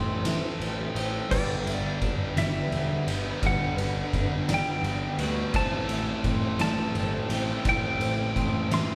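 In a slow, straight 6/8, this euphoric, soaring post-rock excerpt is led by a twangy, compressed lap steel singing its slide melody over a clean electric guitar and a muted, boxy upright piano both spinning arpeggios, while a lush, very quiet string section adds bowed chords with vibrato and portamento. Distorted guitars, one bright and one sludgy entering at 1.3 s, grind out overdriven riffs in the background alongside a punchy fuzz bass, as a saturated, oversized drum kit with a fat snare and punchy kick sits up front from 0.3 s. The band sounds as if playing together in one large, reverberant room, moving from Am7 to Gmaj7 and back.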